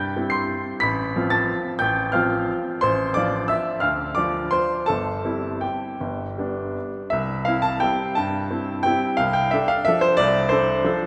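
Sparkling and graceful, this classical piano waltz in C major sways in 3/4 with a rubato feel at 154-196 BPM, its clear, polished baby grand piano playing solo up front across a range from G1 to C7, ringing in a wet church reverb with a 3.5-second tail as it moves from its opening section into a new one at 7.1 seconds before the cut at 11.1 seconds.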